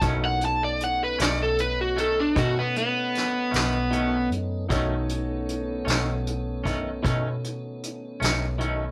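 A slow blues in 12/8 with a straight feel sets a laid-back, gritty mood in this excerpt from a longer piece, played live in one room with moderate reverb over a brush drum kit and a round, foam-muted fingered bass. Over a B9 chord, an overdriven, compressed electric guitar sits up front with a lead solo until 4.3 s. A twangy, clean guitar with harmonic tremolo, a mellow tonewheel organ through a slow rotary speaker and a woody upright piano in the background carry the accompaniment to the end of the excerpt.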